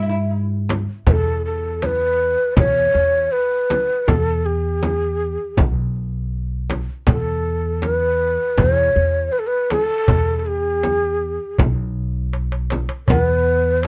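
Festive and passionate, this Arabic maqam ensemble piece in E maqam rast moves at 80 BPM in a straight 4/4, with an up-front, breathy reed-cane ney carrying the expressive, tongued melody with vibrato over a thumpy, woody pizzicato upright bass on gut strings. A deep frame drum struck with hard hands sits close and forward, while a crisp, small metal-shelled darbuka stays in the background; both drums enter at 0.7 seconds, and a drum fill arrives at 12.3 seconds. A bright, fretless oud with double strings offers a plectrum-plucked second line only in brief moments, returning at 13.1 seconds, all in a dry, close sound cut from a longer piece.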